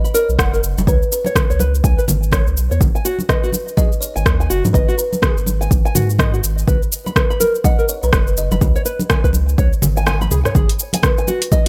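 This excerpt is set in a digital ambience, where an overdriven electronic kick enters at 0.4 seconds, sitting up front and deep, layered and re-recorded in a small room. It is a hypnotic afro house groove at 124 BPM in G# minor, swung on the sixteenths, moving through B5, C#5, G#m7 and C#sus2 chords. A woody, boxy nylon-string guitar with old strings plays thumb-plucked arpeggios under delay and sidechain pumping, while a mellow kalimba carries a soft, ringing, airy melody from 0.1 seconds, also treated with delay. A round sine sub bass with a fast attack enters at 0.3 seconds and pumps against the kick, and an electronic afro-pop kit adds metallic hi-hats, rim clicks, shaker and toms in a large room. Bright, damped congas played with hard hands sit in the background from 0.8 seconds. Near the close the kick drops out from 10.1 seconds as a short drum fill leads back in.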